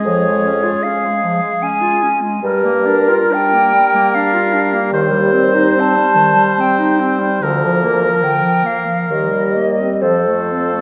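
A wet recital hall reverb, with a decay of about 1.8 seconds, surrounds this short passage from a slow romantic movement for wind quintet, lyrical and tender in mood. The tempo moves freely between 64 and 80 BPM in 3/4 time, with a rubato feel throughout. A hollow, pure concert flute carries the melody with vibrato and tongued notes, while an up-front, punchy oboe with light vibrato sings a second line beneath it. A bright, close-miked clarinet and a warm French horn with light vibrato fill in the accompaniment. A mellow, distant bassoon with vibrato enters at 0.1 seconds to supply the bass. The harmony passes through Db/F, Gm7, Cm/Eb and Bb/D before arriving on F at 10.0 seconds.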